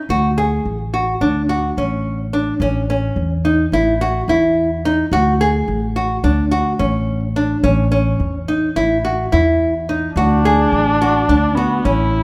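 In an uneven 9/8 at 214 eighth-note beats per minute with a straight feel, this contemporary chamber piece moves restlessly and playfully, a fingerpicked nylon-string guitar spinning small, warm arpeggios over pizzicato upright bass that sounds woody and thumpy, both close and present from the start as the harmony alternates between D and A. At 10.2 seconds a single bowed viola joins as a second line, dark and boxy with vibrato, soft attacks and portamento, all set in a moderate recital-hall reverb. The passage is cut from a longer piece and breaks off at 12.2 seconds.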